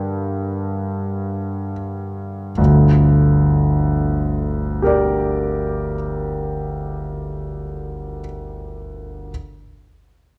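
A dark, warm recording in a moderate recital hall with a 1.5-second reverb frames a clear, intimate grand piano, up front with audible action noise and long sustain, playing a melancholic, mournful romantic nocturne in G minor and 6/8 at a rubato 22-27 BPM in dotted quarters. It opens on a G minor chord, slows over the first 2.6 seconds and ranges from G1 to G5 in this short fragment cut from a longer piece.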